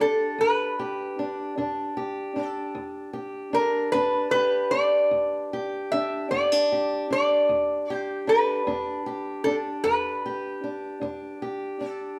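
Acoustic country blues in a slow, mournful 12/8, this smoky duo fragment is cut from a longer piece and sits on a single Em7 chord throughout its 12.2 seconds. Up front, a lap resonator guitar carries the melody with metallic, nasal slide lines played with fingerpicks, while a fingerpicked parlour-style steel-string acoustic guitar supplies a dark, boxy accompaniment beneath it. The two play live in one room, wrapped in a moderate stone-room reverb.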